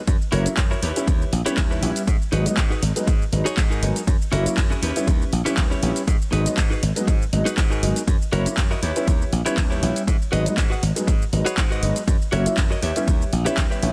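Filtered disco house at 120 BPM in G# minor, nostalgic and funky, with a light swing on the sixteenths and a looping F#7, D#7b9b13, G#m7 progression across this short cut from a longer piece. A clean, scooped electric guitar riff starts at 0.0 s and a bright, punchy slap bass enters at 0.1 s alongside an up-front analog kick and a drum machine supplying handclaps, hi-hat, ride cymbal and shaker. A dark, boxy grand piano with long sustain and phaser comes in at 0.3 s, while sidechain pumping breathes through the guitar, bass, piano and drum-machine parts in a dry mix with little reverb.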